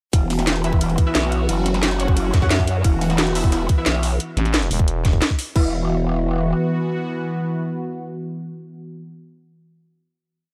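A growling, wobbling bass anchors this dark, tense piece of technical drum and bass at 177 BPM in 4/4, its overdriven, chorused tone pushed up front as its wobble speed changes. A tight electronic kick and a layered kit with cracking snare, metallic hats and crash drive the drop, while a very quiet, gritty, pitched-up jungle breakbeat loop with edits sits far behind them. A resonant, detuned pad holds sustained chords over E5, F#5 and Esus4 harmonies, and an eerie, inharmonic FM bell repeats an eight-step arpeggio in the background with tape echo; the pad, bell and growl bass all pump with sidechain. A thick FM bass briefly adds chopped phrases that answer the growl bass, and sparse, punchy orchestra-hit-like stabs with their own reverb and tape echo sit in the background in power voicings. After the drums stop at 5.6 s, the pad and stabs carry a final E5 chord, with the growl bass lingering until 6.5 s, the pad lasting until 9.0 s and the stabs until 9.2 s, set in a light digital ambience.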